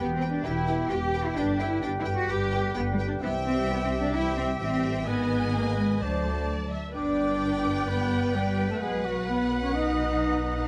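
Triumphant and adventurous, this heroic film-score excerpt moves at 129 BPM in a straight 4/4, with chords moving from E minor through G, C and D7 before a new section begins at 7.0 seconds. A rich, lush studio violin section carries the melody, while a second symphonic violin section, a hollow flute, a distant, roomy oboe and a soft-attacked clarinet play supporting lines in the background, and a very quiet viola section adds accompaniment with gliding portamento. Mellow French horns and subdued trombones hold sustained chords beneath clear trumpet stabs, and a dark, up-front double bass section and a smooth cello section anchor the low end, the whole ensemble set in light reverb.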